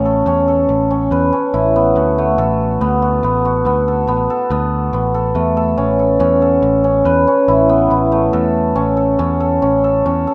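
Close, detailed miking and light reverb give this short excerpt from a longer contemporary chamber piece an intimate, present sound, with a playful, hopeful mood in an uneven 7/4 metre. A hammered, shimmering cimbalom sits up front, ringing out arpeggios over chords that move from Aadd9 to D6 and back. Beneath it, a picked electric bass with a direct, amped tone anchors the low end throughout.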